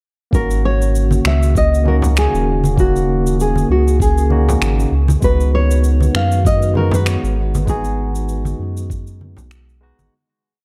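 A dark, lightly reverberant studio sound frames this brief, relaxed and wistful sunset chillout piece with a gentle swing, where a fingerpicked nylon-string guitar plays a motif-based melody through delay over a barky electric piano's held rootless chords and syncopated pushes, also delayed, while a silky string machine pad with ensemble chorus arrives at 1.0 s, a round sub bass glides through long notes up front, a thumpy electronic kick and airy cabasa and finger snaps carry a light lounge beat, and ringing low-tuned congas join at 1.1 s before the whole piece fades out from 6.9 s.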